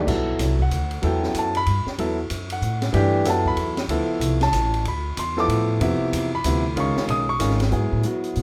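Spiritual and intense, this brief fragment of modal jazz swings in 3/4 at 188 BPM, moving from Em9 through Dm9 and C#7 to F#m11. An intimate concert grand piano, up front, with deep bass, long sustain and audible action noise, carries the accompaniment over a woody, pizzicato upright bass with steel strings. At 0.1 s an acoustic drum kit joins with dark cymbals, a high-tuned snare and a boomy kick, all sitting in a natural studio room under light reverb.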